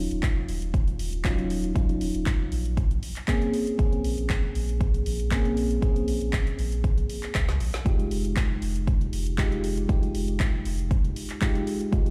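A mellow FM electric piano sits up front in this hypnotic, late-night deep house excerpt, playing soft, round stabs with a fast attack and decaying tail, thickened by chorus, sidechain pumping, a low-pass filter and digital delay. Beneath it, a round sine sub bass holds long, sustained notes between Eb1 and Db2, pumping with the sidechain. A deep, layered electronic kick drives the 118 BPM groove in 4/4 with a light 16th-note swing, while a deep house kit adds handclaps, dark hi-hats and a woody snare, with a drum fill from 7.3 to 7.9 seconds. The harmony moves from Ebm9 through Bbm9 to Fm9, arriving on the last chord at 7.9 seconds. The mix sounds as if played on a big sound system in a bare room, wrapped in a large studio reverb that gives it a spacious, nocturnal glow.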